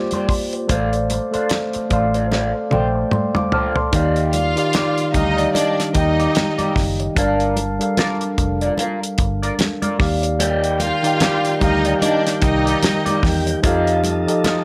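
Light reverb and small-room ambience frame this silky, cinematic 1970s-style soul excerpt at 74 BPM with a swung 16th feel, where a mellow, chorused tine electric piano sits up front beside a dry, damped drum kit with a fat snare and tight kick, background congas played with hard hands, a dark, foam-muted fingered bass and a slightly broken-up wah guitar riff, while a lush bowed string section enters at 4.3 seconds and a smooth tonewheel organ with key click and fast rotary speaker joins at 10.4 seconds.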